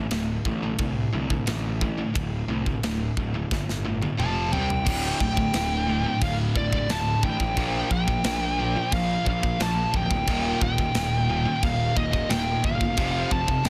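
Dark and relentless, this heavy metal excerpt in D phrygian pounds along at 89 BPM: two bright, picked rhythm guitars (one overdriven, one high-gain distorted) churn a low riff in the background over a growly, fuzz-laden bass and an up-front, polished drum kit with bright cymbals and a tight kick, until a drum fill at 3.5 seconds ushers in a warm high-gain lead guitar and, from 4.9 seconds, a very quiet double-tracked sludgy guitar, all within a small-room ambience and a dense, heavily limited master as the chords move from D5 through Bb and Eb to F.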